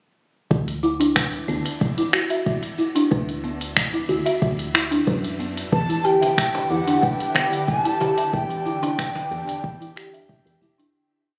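A woody marimba played with medium mallets sits up front, cycling a rustic 12-step loop that drifts against the bar through tape echo and shimmer reverb, over a soft, dark FM bass line and a crisp afro-pop kit of cabasa, finger snaps and closed hats paired with a deep electronic kick in this meditative organic downtempo piece in E minor at 92 BPM. At 5.7 seconds the harmony moves from D to Em7 as a breathy, bright bass bansuri enters with close-miked arching motifs, joined by a detuned sawtooth pad with chorus and sidechain pumping, a very quiet bronze singing bowl holding a ringing high note, and, from 6.2 seconds, faint vintage cajon. The whole piece sits in a huge ambient reverb with a phone-in-the-room character and fades out from 7.5 seconds to the close.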